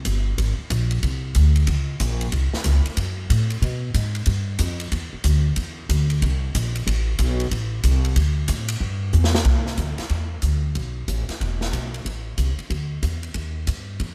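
An upright bass and a swinging big-band drum kit start together in this joyful, energetic jazz excerpt, driving a brisk 185 BPM swing in 4/4. The pizzicato bass sits up front with a woody, dark, thumpy gut-string tone. Behind it, the drums sound airy and polished, with a punchy kick, medium-tuned snare, hi-hat and ride. A drum fill at 9.1 seconds leads into a new section at 9.5 seconds, and the close, detailed sound carries little reverb.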